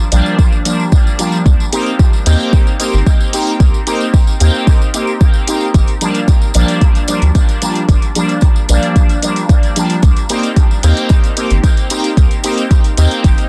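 A resonant polysynth carries this nocturnal, hypnotic dub techno excerpt, its juicy, detuned stabs sitting up front with a bright filter sweep, chorus, phaser, dub echo and sidechain pumping. Beneath it, a soft, round sub bass holds sustained low notes that pump in time, under chords that alternate between Gm7 and Cm7. A deep, layered electronic kick enters at 0.4 seconds and drives the steady 112 BPM pulse in 4/4 with a straight feel. Metallic analog-style hi-hats sit in the background, while a jingly acoustic tambourine adds close shimmer. The mix is dense and heavily limited, wrapped in digital ambience, and the whole 13.5-second cut stays within one hypnotic section.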